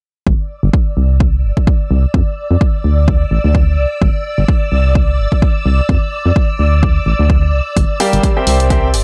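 A swung 16th-note pulse at 128 BPM drives this short, soulful and energetic piano house excerpt in G dorian, its overdriven, punchy kick sitting dry and up front from 0.3 seconds. Beneath it a solid FM bass, round and dark with a fast attack, pumps with sidechain compression and carries a filter sweep, while a vintage string machine holds shimmering sawtooth chords high above, slow to bloom, thickened by ensemble chorus and also pumping and filter-swept. The harmony cycles through G5, C, Dmadd9 and D5 before turning to Gm7 and C7 near the close. A layered, tape-warm hi-hat, re-recorded in a large room, joins at 7.8 seconds, and at 8.0 seconds a clear, open baby grand piano arrives with a riff of long sustain, pumping and trailed by dub echo. The mix is dry in ambience yet heavy with echo, keeping the kick, bass and piano close and present.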